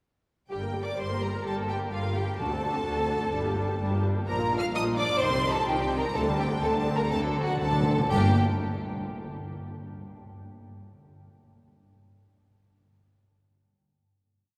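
Quick classical-period orchestral piece with an urgent, stormy mood, its violin section carrying an expressive, vibrato-laden melody while a second violin line doubles the tune at the octave with a focused, smooth top. Violas add a rocking two-note figure and sustained chords with portamento, dark cellos sit in the background with bass on the beats, and distant double basses double the bass line evenly. Round, soft-mallet timpani enter at 2.4 seconds with single strokes on bass notes and play a fill from 7.1 seconds before the final chord at 8.1 seconds, all bathed in a cathedral-like reverb.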